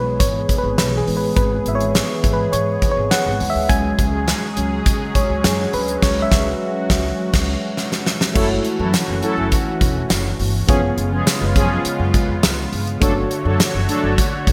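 An FM electric piano with a mellow, decaying tone carries a solo through the first 8.4 seconds of this dramatic, moody 1980s-style pop excerpt, over a lush, detuned sawtooth pad with chorus, a woody pizzicato upright bass and an up-front gated drum kit with a fat snare, punchy kick, bright cymbals and tambourine, until a band accent and drum fill give way to dark, brassy synth stabs from 8.4 seconds in a bright, polished production with hall reverb.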